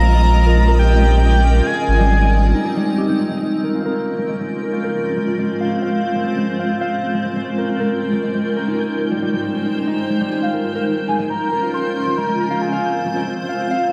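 A deep, round sub bass sits up front for the first 2.5 seconds of this glitchy, intricate IDM excerpt at 137 BPM in Bb dorian, under a cloudy, evolving granular pad and a ringing, thumb-plucked concert harp whose low-pass-filtered, delayed arpeggios carry a filter sweep from 3.4 seconds onward. A warbling, nostalgic lead with subtle chorus, vibrato and digital delay sings its melody at the opening and returns at 10.4 seconds, while a grainy, flickering texture hovers in the background. The harmony circles through Bbm7, Abmaj7 and Fm, with a brief break after the bass drops out, all set in light reverb.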